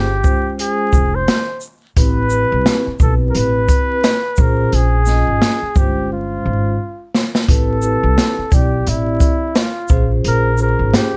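A breathy flugelhorn carries the melody in a mellow, cool jazz-hop groove, its scooped notes and light vibrato floating over a vibraphone whose soft mallets and slow motor vibrato give a ringing, vintage shimmer to the Bbm9 and Am9 chords. Underneath, a woody pizzicato upright bass and an up-front acoustic drum kit with a boomy kick, hi-hat, shaker and snare keep a lazy swung pulse, with a drum fill from 6.1 to 7.5 seconds. Light reverb and vinyl crackle wrap this brief cut from a longer piece in a dusty, late-night haze.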